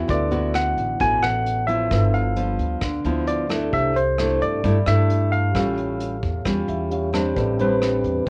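Intimate and wistful, this bossa nova fragment puts a barky, lightly overdriven tine electric piano melody up front beside a fingerpicked, full-bodied nylon-string guitar, over a woody, growly pizzicato upright bass and a muffled vintage brush kit with punchy kick and rim clicks, while a dark, mellow concert grand sits in the background and adds a fill at 6.5 seconds, the recording carrying a moderate booth ambience and worn, warbling cassette tape as the chords move from D69 through G13, C69 and A7b13 to Am11.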